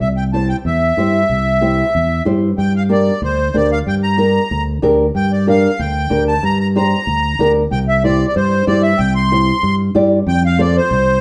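A sweet, reedy accordion with a light tremolo tuning opens this joyful, festive cumbia, carrying the melody high over a round, punchy fingered electric bass that sits dark and up front. At a brisk 187 BPM in a straight 4/4, the accordion's plate reverb gives its sweet line a little shimmer, while the bass holds the low end with a direct, amped tone. At 0.3 seconds a small, fingerpicked nylon-string guitar joins as the accompaniment, adding a warm acoustic layer in the middle register. The harmony moves from C to G minor, back to C and then F, with the music shifting into a new section at 2.6 seconds. The whole recording is heard from further back in a wet studio room, and in this brief cut from a longer piece the guitar drops away at 10.8 seconds, shortly before the end.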